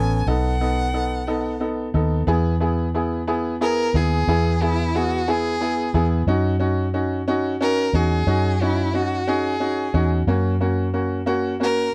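A dry, close 1970s-style studio sound frames this aching, melancholic six-eight pop ballad excerpt, where a warm, expressive bowed violin with vibrato and portamento carries the melody over a clear, woody upright piano and a round, punchy, foam-muted electric bass, moving through B7, E, D#m7 and F#.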